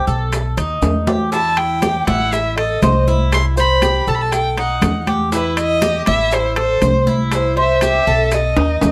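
Nostalgic and warm, this short cut from a longer Cuban son and guajira piece opens on a picked Cuban tres with metallic double strings playing arpeggios. It is joined almost at once by a woody, thumpy gut-string upright bass played pizzicato up front, ringing metal-shell timbales, and, in the background, thick-skinned congas, tight bongos and grainy maracas. At 1.3 seconds a single bowed violin enters up front with vibrato and portamento to carry the melody over chords cycling through B7, Em, Am and C, with drum fills at 0.8 and 8.6 seconds and close, detailed sound touched by light reverb.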